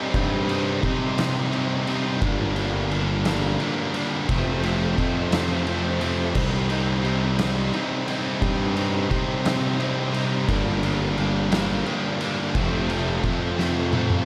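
A dark, brooding stretch of quiet-loud alternative rock in a slow 6/8 at 58 BPM in C dorian opens with a distorted, high-gain guitar riff up front, alongside an overdriven semi-hollow guitar set in the background, while a very quiet tonewheel organ holds sustained chords through a slow rotary speaker. At 0.1 seconds a growly fuzz bass pushes forward, and an oversized, low-tuned drum kit arrives with a fat snare, punchy kick and a rolled-off top in a stone-room sound, over chords cycling through Cmadd9, Gm7 and F. A drum fill at 13.6 seconds closes this excerpt, all within a small room ambience.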